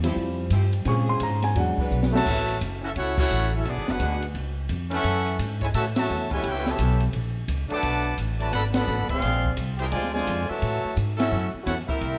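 This joyful, brassy big band swing excerpt at 172 BPM in A major opens with a short upright piano passage, intimate with audible action noise, over pizzicato upright bass, a distant saxophone section holding sustained chords in the background, and an open jazz drum kit that closes the intro with a fill from 1.9 to 2.3 seconds. At 2.1 seconds a bright, present trumpet section takes the melody up front, joined by a trombone section with vibrato playing a second line, and the full band hits accents at points such as 3.1 seconds. The woody bass with steel strings sits up front, while the kit has dark cymbals, a high-tuned snare and a boomy kick, using crash, ride, hi-hat, snare and kick. The harmony moves through colourful changes like Dm11, Bbm7 and E7 before settling on A6, then travels through F#m7, Bm7 and Bb9 back to A6. A moderate recital hall reverb and a dark, warm production frame the whole piece.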